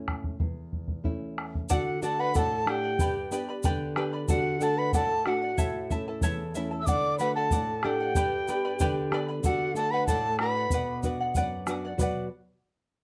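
In a straight 2/4 at 93 BPM, this melancholic, wistful Andean folk excerpt opens on a dark, fingerpicked nylon-string guitar with audible finger squeak and a round, vintage bombo up front; at 1.7 s a reedy, vibrato-laden large quena takes the melody over a hollow, airy pan flute second line with crisp chiff, joined by a shimmering double-strung charango and a grainy, close tube shaker, all moving through D, G and A chords toward a closing B minor in a moderate studio reverb.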